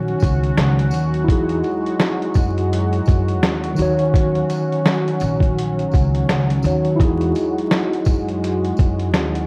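Worn, warbling cassette tape with vinyl crackle and light reverb frames this hazy, nostalgic lo-fi hip hop excerpt at 84 BPM with a swung 4/4 feel, where a mellow tine electric piano and a smooth, detuned sawtooth pad with chorus move between D#m7 and Emaj9 over a woody pizzicato upright bass, while a gritty, compressed boom bap sampler-style kit with a thumpy kick sits up front and a jingly tambourine stays distant in the background.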